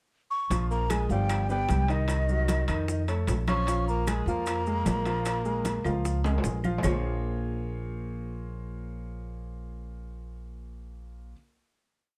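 Sultry and sophisticated, this short Afro-Cuban jazz piece in Bb minor moves at 152 BPM, with a breathy, vibrato-laden flute carrying a motif-based melody from 0.3 seconds while a growling, raspy tenor saxophone adds a second line in octave doubling beneath it. An intimate grand piano with audible action noise plays a montuno in octaves over a woody, up-front pizzicato upright bass tumbao that anticipates the chords, and congas with slaps and open strokes, round low-tuned bongos, ringing metal-shell timbales, grainy maracas and saturated claves keeping a two-bar time line drive the groove. After a drum fill, the percussion stops at 6.9 seconds and piano and bass hold a closing Bbm9 chord until 11.3 seconds.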